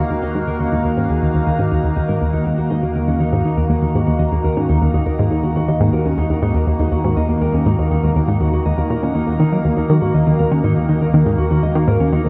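Hypnotic and cosmic, this ambient, sequencer-driven space music piece in Eb minor at 121 BPM rests on a single Ebm chord as a tight, detuned sawtooth synth riff with filter pluck drives up front through chorus, analog delay and shimmer reverb while its filter sweeps across the full 12.3 seconds, an evolving, morphing wavetable pad sustains warbling sine chords with chorus and shimmer, a dark, clean, fingered electric guitar fades in with compressed arpeggios through analog delay, and a very quiet analog drone on Eb2 entering at 0.2 seconds adds pulse-width bass, all bathed in a huge, wet ambient reverb in this excerpt cut from a longer piece.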